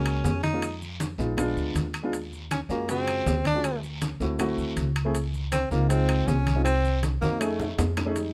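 A breathy tenor saxophone leads this short cut from an Afro-Cuban jazz piece, its mellow subtone, scooped notes and vibrato carrying a sultry, fiery melody up front in a jazz-style solo voice. Beside it, a dark grand piano with short sustain supplies a mellow accompaniment through lush extended chords such as Gbmaj9, Ebm11 and Dbmaj9, while a pizzicato upright bass on steel strings gives a woody, thumpy foundation in straight 4/4. The percussion bed is busy: low-tuned, damped congas sound bright and compressed, metal-shell timbales ring close and dry, a raspy guiro and faint vintage claves add texture, and grainy maracas sit in the background. A drum fill runs from 7.2 to 8.2 seconds as the harmony reaches an F7alt chord near the end of the passage, all set in a light reverb.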